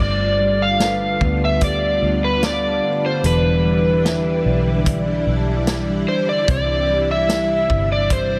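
A straight 4/4 pulse from a vintage drum kit with a punchy kick and rolled-off top enters at 0.8 seconds beneath a round, foam-muted fingered bass, carrying this melancholic, ethereal dream pop fragment, cut from a longer piece, through G9, Em7 and C. Up front, an overdriven slide guitar played with fingerpicks sings the melody through analog delay and shimmer reverb. A dark, clean electric guitar arpeggiates with subtle chorus, a lush sawtooth string machine holds slow-attack chords, and a metallic vibraphone with hard mallets and fast motor vibrato rings in the background until 6.1 seconds, all set in an echo-heavy mix with a wet spring reverb.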